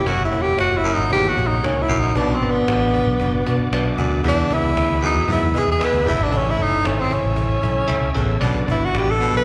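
Warm and uplifting, this uptempo 1960s-style soul excerpt moves at 115 BPM in A major, with a breathy, up-front tenor saxophone soloing throughout, its scooped notes and soft attack riding a slapback echo. Underneath, a raspy baritone saxophone growls a low riff, a barky, bell-like electric piano shimmers with lush chorus, a round, punchy muted bass anchors the groove, and a very quiet, reedy tonewheel organ holds sustained chords through a slow rotary speaker. A woody cajon sits distantly in the background, a mellow horn section briefly adds a soft second line between 5.5 and 6.3 seconds during a band accent, and the whole performance is heard through a venue's PA with recital-hall reverb.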